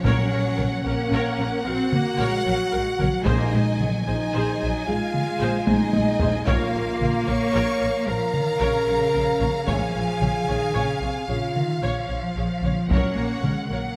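Relentless and heroic, this epic orchestral film-score passage, cut from a longer piece, moves at 75 BPM in a straight 12/8, with the beat felt in dotted quarters. A distant taiko ensemble struck with hard sticks drives it throughout, breaking into a fill at 5.7 seconds, while timpani played with soft mallets sit round and close in the background until 7.2 seconds. A mellow French horn section holds sustained chords, and beneath it bowed cello and double bass sections, smooth and even with vibrato, anchor the low end, the basses holding a low Bb. The viola section supplies accompaniment, a focused second violin line reaches as high as Db6, and on top the lead violins carry an expressive melody with a soft attack and lush vibrato. The harmony moves through Gb, Ab, Bb minor and Db over a constant Bb in the bass, the ensemble placed in a moderate scoring-stage reverb.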